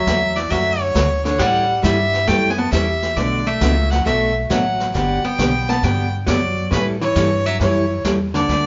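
A clear, biting fiddle carries the melody from the start over a dark, hollow-bodied archtop second line and a woody, thumpy upright bass, with a bright jumbo acoustic guitar and distant brushed drums joining at 0.1 seconds in this playful, cheerful western swing at 135 BPM with a swung feel. The fiddle sits up front with light vibrato and a nasal, earthy edge, while chords move from Dmaj7 through A7, Bm7 and Gmaj7 and back to A7, and finger squeak can be heard on the fresh-stringed acoustic. The band sounds as if playing live in one room, wrapped in moderate large studio reverb with a dulled top end.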